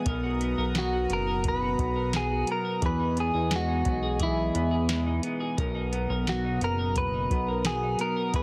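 A mellow analog pad holding sustained chords and a semi-hollow electric guitar playing arpeggios through lush chorus and tape echo open this ethereal, dreamy dream pop excerpt in B major. They are joined at 0.1 s by a glossy chorused synth bass and a soft vintage rhythm box with a deep kick, crisp snare and metallic hats that sets a straight 87 BPM pulse. A clean electric guitar melody with tape echo enters at 0.8 s, and the piece moves from Bmaj7 to Emaj7 and back under moderate studio reverb and a heavily compressed radio sound.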